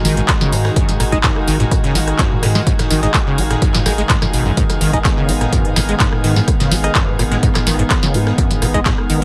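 Acid house at 126 BPM in G# dorian, raw and gritty, built on a squelchy, resonant sawtooth acid riff with overdrive and tape echo sitting in the background over a deep, saturated sub bass and a punchy, tape-warm electronic kick that enters at 0.3 seconds. A booming analog drum machine supplies handclaps, metallic hats, rim click, tonal snare and toms in a short room, while a dusty, compressed sampler-style kit adds a fat snare, hi-hat and tambourine with sidechain pumping further back. A lush, detuned unison pad with 12-bit grit and floating, distant bowed strings both pump under the kick, and from 1.1 seconds a hollow, wave-folded organ stab with phaser and tape echo punctuates this short excerpt.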